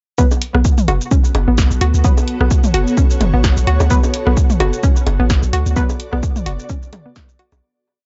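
Opening at 0.2 seconds with a hollow, bouncy square-wave pluck repeating a 16-step sequence, muted sawtooth dub chord stabs echoing sparsely in the background, an up-front four-on-the-floor kick and a tape-warm analog drum machine playing closed hats, shaker and a backbeat snare, this hypnotic, clinical minimal techno piece in B minor at 129 BPM with a swung 16th-note feel soon adds overdriven electronic bongos, rim clicks and low toms in cross rhythm, a deep, rolling staccato sub bass with a pitch-drop attack, an ethereal airy pad of slowly shifting chords with tremolo and sidechain pumping from 1.0 seconds, and a very quiet swarming drone on a held high note, set in a dry, gritty, cassette-saturated mix that fades out from 5.1 seconds.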